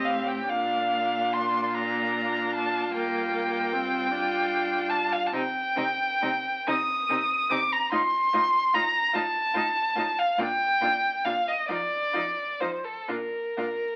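Swaying in a lilting 6/8 with a free, rubato pulse, this slow romantic movement for string quartet unfolds in a tender, lyrical mood. Up front, the first violin carries the melody with a rich, smooth vibrato, reaching as high as Eb6, while a second violin shapes an even inner line beneath it. A focused, somewhat distant viola fills in the accompaniment, and the cello anchors the bass with a soft attack, expressive portamento and a mellow glow. The harmony moves gently from Bb through Gm7, Cm and F7/A back to Bb, then passes through F7(no3) before settling on Bb at 13.1 seconds. The quartet sits in a large studio with moderate reverb, heard through the crackle of a very old 78 rpm record, in a brief passage cut from a longer piece.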